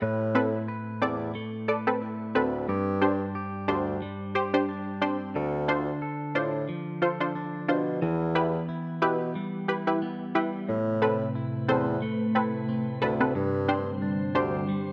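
Bathed in a lush hall reverb, this hypnotic, sultry dancehall fragment in A minor moves at 90 BPM with a light swing, as a bright, twangy clean electric guitar picks arpeggios over a mellow, roomy bassoon bass with light vibrato, punchy detuned sawtooth chord stabs with a fast pluck and chorus, and a glassy, warbling FM pad that drifts in at 11.0 s.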